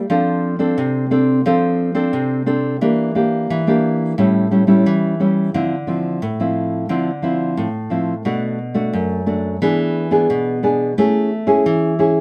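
Yearning and nostalgic, this short samba passage, cut from a longer piece, features a lone nylon-string guitar played up front with a warm, thumb-plucked classical touch. Its harmony drifts through rich jazz-tinged chords, from F6 and Em7b5 through Dm9 and Bm7 before settling on a bright Amaj7 near 11.0 seconds. A moderate studio reverb gives the guitar a gentle sense of space.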